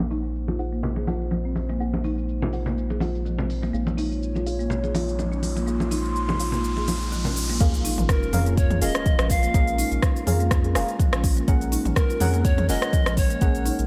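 This hypnotic, spiritual afro house excerpt in Bb minor at 124 BPM opens on a dark, detuned analog pad under a filter sweep, with soft, nasal chord stabs, a round analog bass, a deep house kit with smooth hats, cabasa and rim clicks, band-limited low-tuned congas, and a woody soft-mallet marimba arpeggio, all but the kit and congas pumping against the groove. A riser and sub drop build from 5.6 s into the drop at 7.6 s, where the congas stop and a deep electronic kick lands up front, and an airy pan flute with chiff and vibrato carries the melody from 8.1 s. The dreamy, low-passed mix is soaked in plate reverb, and delay trails the stabs, marimba and flute as the chords move from Ab7/Bb through Bbm7 to Gbadd9.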